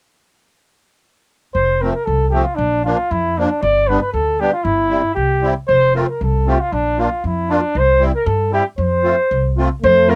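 In a bouncy 2/4 at 116 BPM with a loose, rubato feel, this festive alpine folk dance-band passage in F major, cut from a longer piece, opens at 1.5 s with a distant, roomy flugelhorn singing the classical-style lead over woody pizzicato upright bass, while a reedy, shimmering musette accordion adds up-front accompaniment, and a warm euphonium slips in a brief second line at 9.8 s, all captured in a booth with moderate ambience with cassette tape coloring the horns and accordion for a homespun, tape-recorded sound.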